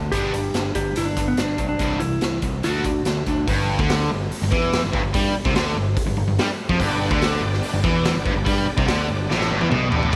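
Classic rock at 144 BPM in G major with a driving, sunny mood, built on an up-front, double-tracked overdriven guitar riff, a growling fingered bass, and a raw, punchy garage drum kit in a pumping stone room, while a dark, compressed lap steel slide melody with slapback echo plays until 3.2 seconds, a shouting tonewheel organ with key click and slow rotary speaker joins in the background at 6.8 seconds, and a drum fill arrives at 9.3 seconds in this piece cut from a longer song.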